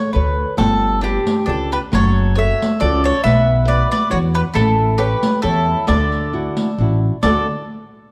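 Sunny and lively, this short excerpt cut from a longer Italian folk serenade in D major sways in 3/4 at 135 BPM with a swung, rubato feel, as a round, up-front picked mandolin carries the melody over fingerpicked flamenco guitar, a woody, thumpy pizzicato upright bass entering at 0.2 seconds, a vintage-toned riq with jingling highs from 0.6 seconds, and a bowl-back mandolin adding a second line from 1.0 seconds, all set in a moderate recital-hall reverb within a dark, warm production as the chords move from Aadd9 through F#m, Bm and A7 to settle on D.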